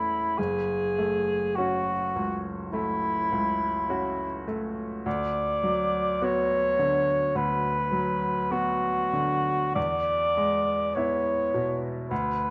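A dark-toned cor anglais carries the lyrical melody in this serene romantic classical duo, singing up front in the classical style with a light vibrato, though its tone also has a distant, roomy quality. Beneath it, a bright baby grand piano provides the accompaniment, its brilliant, natural sound ringing with long sustain and sitting up front as well. The music moves slowly at 52 BPM in 4/4, with a flexible rubato feel, and both instruments play throughout the 12.5-second passage, which is cut from a longer piece. The harmony moves from F#m7 at the start through Bm/D to E near the close. Close, detailed microphones capture the duo, set in a moderate scoring-stage reverb that gives the performance a spacious glow.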